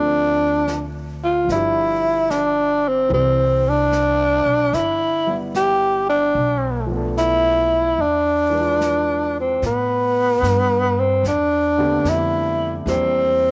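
A growling tenor saxophone carries the melody up front in this romantic, intimate jazz ballad, its breathy subtone and raspy grit softened by scooped notes and a gentle vibrato. Underneath, a warm concert grand piano supplies chords with short sustain and deep low end, while a woody, thumpy upright bass plucks gut strings below. A brushed drum kit enters at 0.7 seconds, sitting quietly in the background with snare and hi-hat. The tempo is a slow 74 BPM in 4/4 with a swung eighth-note feel, moving through a ii-V into C major before turning to A minor at 9.6 seconds on a lush Am11 chord. The saxophone, piano and drums carry a cassette-tape hue, and a moderate spring reverb adds a homespun glow to this excerpt cut from a longer piece.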